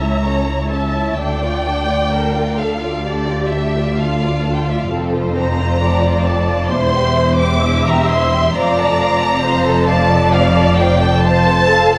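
Bowed strings sound together from the start of this yearning, melancholic classical excerpt, a slow romantic movement for string orchestra in D minor at 66 BPM with a rubato feel: the up-front first violins carry a lush, soft-attacked melody with vibrato and a smooth top, the second violins hold an even second line, the distant violas give expressive accompaniment, and the rich, distant cellos join the double basses, whose portamento adds expression, on the bass, all in a dark, warm production within a wet concert hall reverb.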